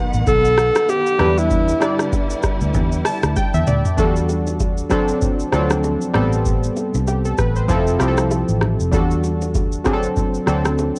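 Detuned, chorused analog keys, a dark foam-muted fingered bass and a lush, distant bowed string section open this smooth, sultry afrobeats excerpt in E minor at 97 BPM, with a swung sixteenth-note feel and a tape-worn home-cassette sound. A booming analog drum machine with a deep kick and metallic hats joins almost at once alongside very quiet, ringing congas and bongos, while a breathy, whispered alto saxophone sings a brief up-front line that ends at 2.0 seconds. The strings drop out at 4.0 seconds, after a keys fill and a drum fill, as the harmony settles into a cycle of Em11, D7, Am9 and Fmaj7.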